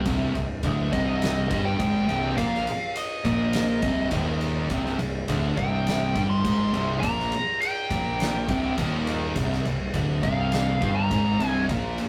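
Stoner and doom metal in C minor at 103 BPM, this ominous, heavy passage, cut from a longer piece, rests on a single C minor chord as two thick fuzz guitars grind out a distorted riff over a growly, overdriven fingered bass and an oversized low-tuned kit with a punchy kick, fat snare and dark ride cymbal. From 0.9 seconds a picked fuzz lead guitar sings high above, colored by wah and delay. The rough rehearsal-room sound carries moderate studio reverb, with the drums saturated and gritty in a big, pumping room.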